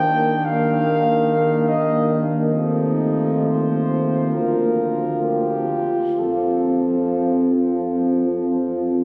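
A mellow, close-miked flugelhorn carries the melody through this serene, lyrical nine-second excerpt of a hymn-like classical piece for brass band in free time, tuned to A4 = 439 Hz and moving over Ebmaj7(no3), F7/Eb, Bb/D and F. A warm French horn section with light vibrato sings a second line in the background, while a brilliant, vintage-toned trombone and a dark, soft-attacked euphonium fill in the accompaniment, and a dark, up-front tuba with light vibrato and a smooth top anchors the bass. Captured on a phone in the room with compression, the band sits in a wet cathedral reverb with a 4.3-second decay.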